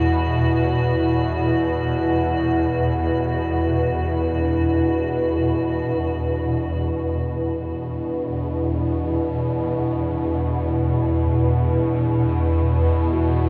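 Ominous and dark, this free-time dark ambient drone, cut from a longer piece, rests on an Esus2 chord, with a swarming, detuned drone up front in the low register and a deep, full-bodied dark analog pad holding sustained chords above it. A very quiet quartz singing bowl rings out meditative arpeggios with slow beating, while an icy, crystalline glass pad adds airy texture until it stops at 6.0 s. Everything sits in a huge, wet ambient reverb with a cassette tape character.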